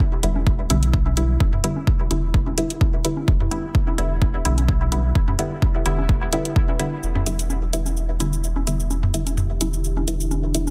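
A punchy, overdriven electronic kick opens this hypnotic, meditative dub techno excerpt, sitting up front beside tape-toned electronic congas and toms that stay in the background, pumping to the sidechain and trailing dub echo. Almost at once, a round sine sub bass arrives with a fast attack and sustained notes, also up front and pumping. With it come metallic, overdriven electronic hi-hats and cabasa and a muted, detuned sawtooth chord stab on an Em7 that plucks and decays through chorus, phaser, sidechain pumping and dub echo, with a filter sweep running across it during the opening stretch. The kick drops out at 6.7 seconds, leaving the swung percussion, bass and stabs to carry the groove. At 9.1 seconds, a deep, moody sawtooth pad with a sub octave, slow attack and long release rises softly in the background, bathed in chorus and its own reverb. The dense, heavily limited master carries light digital ambience, and the small-room sheen rests on the drums and percussion alone.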